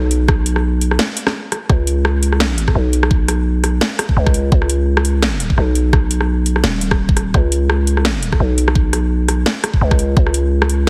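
A growling, buzzy 808-style bass anchors this dark, cinematic half-time drum and bass excerpt, its sine tone hitting with a fast attack and decaying between notes, pushed up front from the opening moment. A layered, produced drum kit enters at 0.1 s with a cracking snare, rim clicks and metallic hi-hats, all tape-warm and re-recorded in a small room. An electronic kick joins at 0.3 s, knocking and sitting up front with a similar small-room character. The sixteenths carry a light swing under the half-time feel, and a brief break arrives at 1.0 s before the groove resumes. The overall sound is dry and heavily compressed, giving it a dense, radio-like punch.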